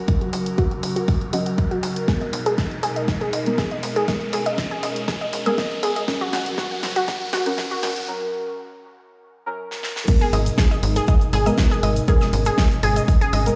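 The punchy electronic kick sits up front, tape-warm and re-recorded in a large room, driving this bittersweet progressive house excerpt at 120 BPM in G# minor. Around it, a lush, detuned unison pluck spins arpeggios through sidechain pumping and dub echo, while a tight, nasal sequencer bass holds G#1 with a fast-attack filter pluck. A deep, dark chord stab with chorus and dub echo and an airy, breathy pad with a slow attack and long release both pump under the sidechain, moving between F#/G# and G#madd9. The opening build-up carries filter sweeps on the pluck and stab, an electronic riser until 8.1 seconds, and drum fills from the big-room kit with its huge snare, crash and hi-hat, leading into a short break. The drop lands at 10.1 seconds, where a grainy, bright tube shaker joins in the background, all heard as if played on a big sound system in a bare stone room.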